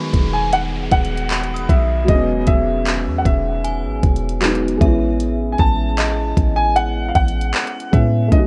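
A dreamy, romantic contemporary R&B passage opens with an up-front baby grand piano carrying the melody through a digital delay, over a soft, felt-muted upright piano whose dark, boxy accompaniment follows the harmony from Emaj7 to Amaj7 at 4.8 seconds, while a downlifter sweeps and a chorused, delayed FM synth chime rings in the background. From 0.1 seconds a deep, boomy 808-style bass and an electronic drum kit join, the kit's knocking kick, handclaps and hi-hat carrying a gritty 12-bit sampler texture. The whole mix sounds dry, coloured by worn, warbly cassette-tape pitch drift.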